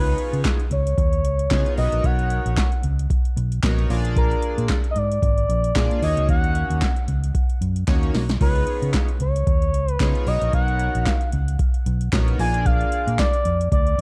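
A swung sixteenth-note groove at 113 BPM in 4/4 drives this danceable, funky slice of early-eighties boogie funk, cut from a longer piece. An overdriven analog drum machine sits up front with a deep kick, punchy snare, metallic hi-hats, handclaps and a crash, its snare, claps and hats framed by a short room, and a drum fill arrives at 7.9 seconds. A foam-muted, round, amped fingered bass shares the front of the mix, while a glossy, bright, chorused polysynth blends pulse-width, sawtooth, triangle and sub-octave tones with a filter sweep. The polysynth carries the Db9, Bmaj9, Bb7 and Ebm7 changes until 13.3 seconds. Above it, a smooth, expressive sawtooth lead with vibrato and chorus sings the melody, and a crisp, close and dry group handclap sits very quietly underneath, all within a dark, warm production bathed in digital ambience.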